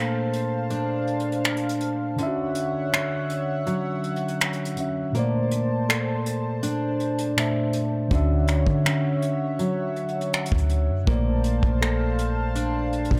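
Contemporary R&B at 81 BPM in 4/4 with a straight feel, this dreamy, romantic excerpt is cut from a longer piece and drifts between Bbmaj9 and Dmaj9 chords. A mellow tine electric piano carries the accompaniment from the start, joined by a shimmering, detuned pulse-width pad holding sustained chords high above, and a dark, full-bodied steel-string acoustic guitar fingerpicking arpeggios that trail off into dub echo. A soft brush drum kit enters at 0.3 seconds with finger snaps, hi-hat and a punchy kick, sitting up front in an acoustic studio room. The opening stretch plays as a break until 8.1 seconds, when a deep, round 808-style bass arrives with fast-attack notes that decay into the low end. A moderate spring reverb gives the whole mix an echo-heavy, floating sense of space.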